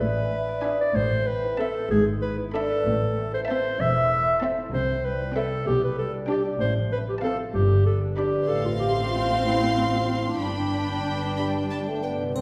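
A mellow, up-front clarinet opens this playful, whimsical film cue in 6/8 alongside ringing, fingerpicked harp arpeggios, dark woody cellos in the background and rich, floating bowed double basses, before warm, soft-attacked sul tasto violins carry a high melody and second line over intimate violas from 0.6 s, a close-miked bassoon with vibrato joins at 11.4 s, and a bright triangle sounds at 12.4 s, the whole cue set in a reverberant recital-hall space that lends its mischievous, magical mood a glow.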